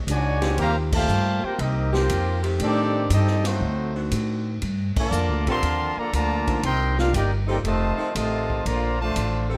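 A joyful, brassy big band swing excerpt, cut from a longer piece, with a clear trumpet section carrying the melody up front while a bright trombone section plays a second line and a tight saxophone section with vibrato holds sustained chords. A woody, pizzicato upright bass sits forward and opens the passage alone for a split second, while a distant, roomy drum kit with punchy kick, ride, hi-hat, snare and crash cymbal drives the swing. The band hits accents at 0.8 and 4.9 seconds over rich jazz harmony that resolves to Bbmaj9 near the close, all in light reverb.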